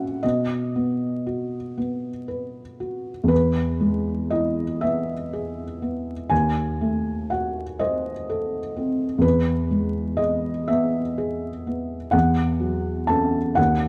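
Tender and dreamy, this romantic classical nocturne unfolds for solo piano in E major, moving in a slow, rubato 12/8 at roughly 38-43 dotted-quarter beats per minute. A felt-muted upright piano carries everything from 0.0 to 13.9 seconds, its soft, mellow tone sitting up front and intimate, with the audible noise of its action adding a natural, close-up presence. The playing spans from D#2 up to A5, and the harmony drifts from B to E, through a D#dim7, back to E, and settles on F#m7 over an E bass. Close, detailed microphones catch the instrument in a moderate scoring-stage reverb, while a layer of vinyl crackle lends a faded, nostalgic patina. It is a brief passage cut from a longer piece, feeling like a private moment overheard.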